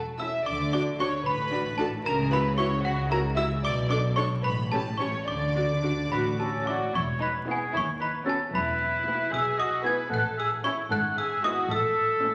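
Awash in a scoring-stage reverb with vinyl crackle and a dulled top end, this playful, mischievous cinematic cue sets a woody, bright trough xylophone with plastic mallets carrying the melody over dark double basses and intimate cellos, while pure, distant violins share the tune, smooth up-front second violins and floating violas fill in with soft-attack sul tasto bowing, and a roomy classical oboe joins the second line at 6.1 s.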